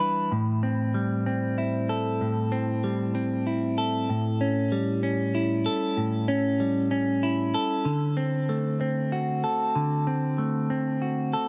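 A clean electric guitar plays alone and up front for the whole 11.5 seconds, its picked, compressed tone coloured by phaser and analog delay as it moves through Am7, A7 and D7. This short rock passage in 3/4, cut from a longer piece, has a melancholic, brooding mood with a straight feel. Light reverb and a digital ambience surround the warm guitar.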